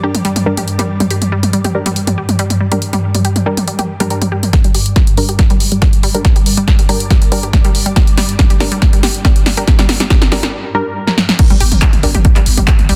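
A punchy, layered electronic kick drum lands up front at 4.5 s, driving this dark peak-time techno excerpt at 140 BPM in G minor, over an overdriven analog drum machine of dry snare, handclaps, hi-hats, toms and crash that pumps against it. A bright, warbling detuned sawtooth pluck riff and muted, chorused dub chord stabs, whose filter sweeps through the opening and the build-up, ride above a tense, swarming granular drone bathed in its own reverb. After a short break, the drop at 11.4 s is followed at 11.5 s by a growling, buzzy 808-style bass on G1, all inside a dense, heavily limited modern master.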